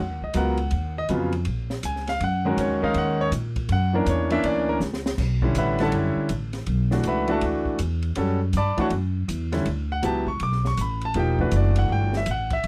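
Modal jazz with a spiritual, searching mood, this brief excerpt swings at 161 BPM in Eb phrygian, with a clear, intimate concert grand piano comping up front, its action noise audible and its deep bass ringing with long sustain over a woody, growly pizzicato upright bass. An open drum kit with dark cymbals, a high-tuned snare and a boomy kick joins at 0.3 seconds and plays a fill leading to a shift to B minor at 5.2 seconds, where the chords move from Bm11 to Em11. The sound is dry and close, in the manner of a 1970s studio.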